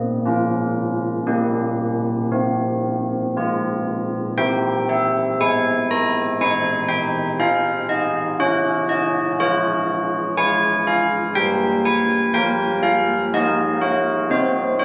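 Set in a steady three-beat metre with a straight, unhurried feel, this short classical piece for church bells is cut from a longer work and carries a solemn, wintry mood. Old church bells play alone throughout, spanning G3 to Bb5 with a bronze, clangorous ring, an audible iron clapper, a minor-third overtone, audible beating and a boxy, up-front presence. The harmony moves from Bbm through Gdim/Bb and Fm/C to a C chord in the opening passage. A second passage begins at 5.4 seconds, moving through Ab, Db and Gm7b5 before the bells fall away from harmony at 14.3 seconds. A long, wet church reverb hangs around the strikes, and the capture was made on a phone in the room with added studio reverb.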